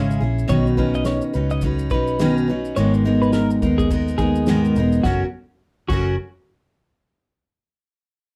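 Heartfelt and carefree, this swung acoustic pop fragment sets a bright, full-bodied picked jumbo acoustic guitar up front over a round, foam-muted vintage bass, with warm, twangy twelve-string electric arpeggios and a natural small-room country kit with a fat snare, punchy kick, shaker and crash, all in a dark, warm production with moderate reverb, before a clean pedal steel enters at 5.1 s with fingerpicked slide notes and volume swells as the harmony settles on F#.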